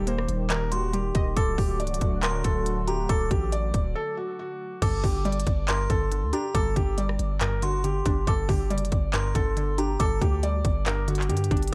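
An up-front trap drum kit with a hard-clipped kick, crisp hi-hats, handclaps, rim clicks and crash cymbal drives this dark, eerie half-time trap excerpt at 139 BPM in G harmonic minor, above a deep, sine-toned 808 bass that holds long, decaying notes. A soft, felt-muted upright piano carries the melody while a glassy, crystalline FM bell adds a high second line, both trailing diffuse ambient delay, and a mellow, detuned sawtooth pad sustains chords through the opening section. A warbly, lo-fi pluck with chorus and phaser accompanies, dropping out at 1.4 s and returning at 4.8 s as the harmony moves from Eb and D to G, all set in a lightly reverberant space.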